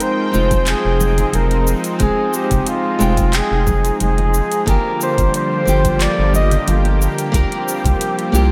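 A mellow, jazz-style flugelhorn with vibrato carries the melody up front from the start, over a bright fingerpicked nylon-string guitar in the background, a lush, warbling detuned sawtooth pad with chorus, and a smooth R&B kit of handclaps, metallic hi-hat and shaker, with analog delay on the horn and guitar. A round, deep analog bass enters up front at 0.3 seconds, and a punchy electronic kick and very quiet soft-handed congas join at 0.5 seconds. This relaxed sunset chillout excerpt moves at 90 BPM in F dorian through Fm9, Gm7 and C7sus4, set in a dreamy mix soaked in lush hall reverb.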